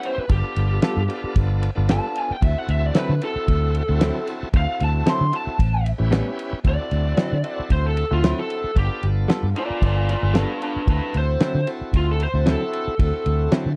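Straight-eighth soul blues in D mixolydian at 114 BPM, this gritty, swaggering passage cut from a longer piece rides a light sixteenth-note swing over ninth chords moving through G9, D9 and A9. A lead guitar through a small cranked amp carries the melody as a solo throughout, its overdriven, picked tone dark. Underneath, a bright tonewheel organ shouts through a slow rotary speaker with a touch of overdrive, while a direct-recorded clean electric guitar, compressed and touched with spring reverb, adds stabs from 0.8 seconds. The cloth-damped drum kit sits up front with a fat snare, tight kick and dark ride cymbal, joined at 0.2 seconds by a vintage muted fingered bass that is round and punchy. The sound is dry and close, with a cassette-tape character, and the drums have a rolled-off top.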